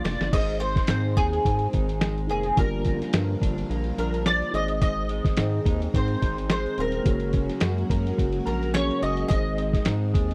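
Indie pop and bedroom pop with a sunny, hazy mood, this piece cut from a longer work opens on a brief drum fill from a muffled, pitched-down sampler-style kit with a thumpy kick, alongside a woody, double-strung mandolin carrying the melody up front with ensemble chorus and tape echo, a deep, round analog bass, and a slightly broken-up electric guitar through a small old amp with lush chorus and vibrato, before a reedy electric piano with fast tremolo and shimmering string-machine violins holding soft sustained chords both enter in the background at 0.3 s, all captured in a dry, close 1970s-style studio sound with light reverb.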